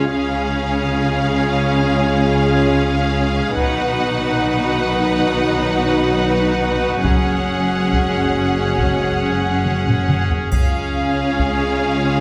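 A cinematic, epic orchestral film-score passage, adventurous and majestic, cut from a longer piece, where lush bowed violins carry a smooth, vibrato-rich melody over a second violin line, expressive violas with portamento, and a deep bed of cellos and double basses. Mellow, distant French horns and very quiet trombones hold sustained chords alongside a hollow clarinet stop on pipe organ with tremulant, all bathed in a wet scoring-stage reverb. Heavy-stick taiko drums enter at 3.6 seconds with a fill just before a bright, faint triangle joins at 10.5 seconds as the harmony returns to C#.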